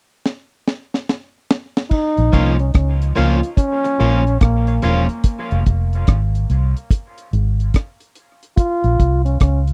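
A dark, vibrato-laden trombone with scooped notes and dub echo enters at 1.9 seconds over a hypnotic, meditative 72 BPM dub reggae groove in Bb minor, led off by a drum fill on a dry, up-front kit with a high-tuned snare and tight kick, joined by a round, foam-muted fingered bass, a slightly broken-up picked electric guitar and hollow, chorused organ stabs tucked in the background until about 5 seconds, all in a close 1970s-style studio sound cut from a longer piece.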